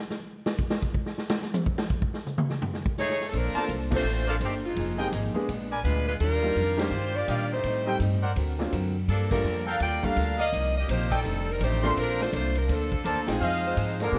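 The rhythm swings at 167 BPM in 4/4, and this big-band jazz excerpt opens with the drum kit playing alone for its first 3 seconds, a boomy kick, medium-tuned snare, hi-hat, toms, ride and crash cymbals sounding natural and up front in a big room. At 3.0 seconds the edgy saxophone section takes the melody, close-miked with a light vibrato, while the woody, thumpy upright bass and a dark, clean archtop guitar on hollow-body electric tone settle into the groove in Bb major. A brilliant trumpet section punches out stabs, and a bright upright piano adds its sparkling accompaniment, with the full band hitting sharp accents at 3.9, 6.7, 9.3 and 13.2 seconds. The harmony moves through rich jazz changes such as Bbmaj9, Ebmaj9, D7alt and F13, giving the brassy, swinging mood plenty of color. In the closing moments a muted trombone section with a nasal straight-mute tone slips in on a second line, all set in a light reverb.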